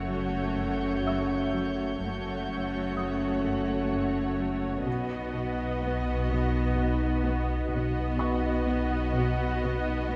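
Tense and eerie, this cinematic excerpt in three-time sets a veiled, con sordino violin section's melody and second line over muted violas, mellow French horn chords, dark cello and double bass sections and a deep sine sub-bass drone, while a barely audible timpani touch opens the first 0.5 seconds, a distant, very quiet muted studio cello riff runs underneath, a high studio violin texture drops out at 4.4 seconds, and an intimate felt-muted upright piano enters at 1.1 seconds, all of it steeped in a wet concert-hall reverb as the harmony moves from F# minor to B.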